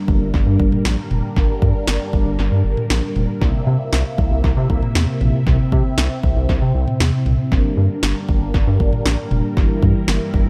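A round, dark analog bass with a wave-folded, filter-plucked tone drives this cool synth-pop fragment in G dorian at 117 BPM, moving from Gm to C7 at 3.4 seconds and back to Gm at 7.5. Alongside it, an up-front, mellow vintage string machine voiced as cellos holds full, sawtooth chords with a soft attack and long release, colored by phaser and ensemble chorus. A layered deep house drum kit with a deep kick, punchy snare, toms, tape-warm character and analog delay keeps a straight 4/4 pulse in a lightly reverberant, echo-heavy mix.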